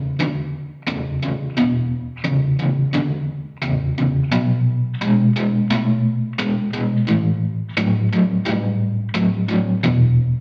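A large, wet studio reverb surrounds this live-in-the-room rock recording, cut from a longer piece, with a swaggering, raunchy mood at 87 BPM in straight 4/4, in E mixolydian and tuned to A4 = 435 Hz. A cranked stack electric guitar takes the solo from 0.0 to 10.4 seconds, bright, overdriven and double-tracked, sitting up front with added tremolo as it is picked between E2 and A3. It moves through E5, then B5 at 4.3 seconds and A5 at 7.1 seconds, before landing back on E5.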